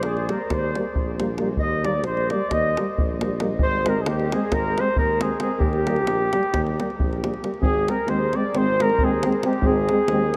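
Driving along in a brisk 9/8 at 269 BPM, this wild, festive Balkan brass band excerpt has a warm, lightly vibrato-laden flugelhorn carrying the melody up front over a smooth-topped clarinet second line, a tight, dry davul, a distant, roomy tuba bass and two background euphoniums, one clear with a soft attack and one mellow, entering at 0.3 seconds, all washed in the huge reverb of a vast, echoing space as the harmony moves between Eb and Ab.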